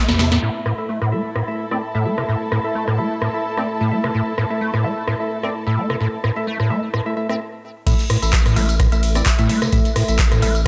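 A squelchy, resonant square-wave acid bass sits up front in this hypnotic, raw acid house excerpt, its riff pushed through overdrive, ensemble chorus and delay, with a filter sweep. Beneath it, a moody, detuned sawtooth pad holds sustained chords in the background, pumping with sidechain, while a hollow, wave-folded organ stab adds percussive hits colored by phaser, chorus, delay and 12-bit sampler grit. A dark, woody string section with vibrato lends a lush, bowed texture until 7.4 seconds, when a brief stop clears the floor. At 7.9 seconds the drop arrives: a deep electronic kick re-recorded in a large room enters, joined by a thick, saturated sine sub bass and a very quiet, dry 70s drum kit with a fat snare, both of which had briefly sounded during the opening fill. All the while, a booming analog drum machine supplies crisp snare, metallic hats, handclaps, rim clicks, tambourine, woodblock, ride and crash, with its hats, cymbals, percussion and snare softened by low-pass filtering, all on a lightly swung 16th-note feel and set in light studio reverb.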